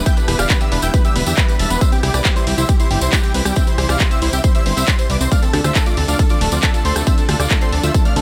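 This driving, euphoric uplifting trance excerpt runs at 137 BPM in a straight 4/4, anchored by a punchy, layered electronic kick sitting up front from 0.1 seconds, with a punchy analog drum machine adding handclaps, hi-hat and rim click that carry a tape-warm character, their hats and cymbals pumping against the sidechain, and a jingly, close acoustic tambourine tucked in the background. Beneath them a fat, detuned sawtooth analog bass with tube saturation and a fast filter pluck sits up front, thick and evolving as it pumps with the sidechain. The melody comes from a huge, dense compressed supersaw with a sub octave, its sustained notes trailed by tape echo and breathing with the sidechain. Higher up, a catchy plucky unison lead plays a second line with vibrato, a filter sweep and a moving notch, mellow and set back in the mix with dub echo, while a bright unison pluck spins arpeggios through its own dub echo. 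A lush, chorused unison pad with a slow attack and long release holds sustained chords moving from Em7 to C at 1.8 seconds and Dm7 at 5.3 seconds, all within a digital ambience, with the tuning set at A4 = 439 Hz.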